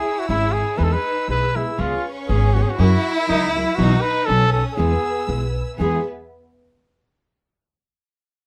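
Lightly reverberant and romantic yet proud, this short cut from a longer mariachi piece moves in 2/4 at 120 BPM in E major. A mellow, smooth-topped trumpet carries the classical-style melody up front, joined by a close, expressive chamber violin section bowing a second line with vibrato, while a lush symphonic violin section holds sustained chords further back. From 0.3 seconds, a full-bodied fingerpicked nylon-string guitar with audible finger squeak and a woody, thumpy pizzicato upright bass on gut strings join, following C#m, E, C#7, F#7, Bsus4 and B before arriving on E.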